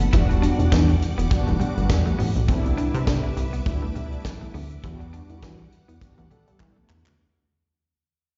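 A punchy, plucky analog bass sits up front in this smooth, danceable early-eighties boogie funk excerpt at 102 BPM, its swung sixteenth-note groove joined by a tight drum kit with a high-tuned snare, hi-hat and handclaps, and bright, very quiet congas. Round, dark synth brass with chorus and slapback echo and a twangy, slightly broken-up electric guitar riff in the background move over Em9 and Cmaj9 chords, while a shimmering string machine holds sustained violin chords. The whole passage fades out, with a drum fill from 6.6 seconds, and it sounds like a live gig heard through a venue's PA in a recital hall, with a muffled top end.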